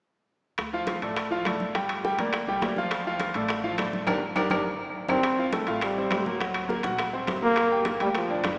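A punchy trombone with vibrato and a smooth top takes the solo up front from 5.1 s in this passionate, fiery salsa excerpt, over a clear, vintage concert grand piano with deep bass, a thumpy pizzicato upright bass, and tight high-tuned bongos, thick-skinned congas and ringing metal-shell timbales in the background, with very quiet woody claves, a band accent from 4.1 s and a drum fill from 4.5 s leading in, and the group set in a wet church reverb with a small-speaker sound.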